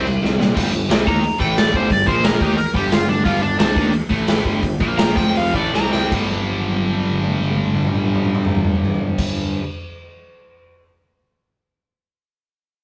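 Punk rock cut from a longer piece, urgent and raw, with a sludgy, double-tracked distorted guitar riff and a growly fuzz bass driving over a gritty, saturated garage drum kit with a punchy kick and a rolled-off top. An overdriven semi-hollow guitar carries a bright, hollow-body solo from 1.1 seconds, while the music slows down before drum fills push into a new section at 6.1 seconds. The whole take has the rough feel of a rehearsal-room recording in a small, moderately reverberant space.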